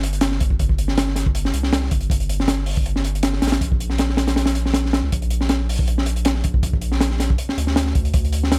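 A crunchy, gritty breakbeat kit with a punchy kick and high-tuned snare opens together with a thick, saturated triangle-wave sub bass in this nostalgic, atmospheric drum and bass and jungle fragment at 159 BPM in G minor, its dark, rolled-off drums sitting up front in a dry, small-room sound as the deep bass sustains beneath them through the full 8.6 seconds.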